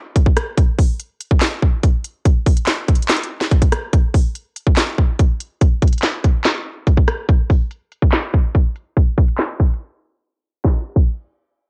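Recorded at home on cassette with a low-pass filter and little reverb, this short cut from a longer hip hop piece sounds close, dry and dusky. The mood is brooding and eerie, set at 143 BPM in 4/4 with a half-time feel. A trap drum kit carries it alone from 0.2 to 11.1 seconds, sitting up front with a tape-warm tone: a hard-clipped kick, a sharp snare, crisp hi-hats, handclaps, rim clicks and crash cymbal hits. From 3.9 seconds a filter sweep colors the groove through the middle stretch, and a break at 9.8 seconds opens a brief gap before a short closing section arrives at 10.6 seconds. The produced, electronic drums and the lo-fi cassette haze give the piece a shadowy, unsettled character.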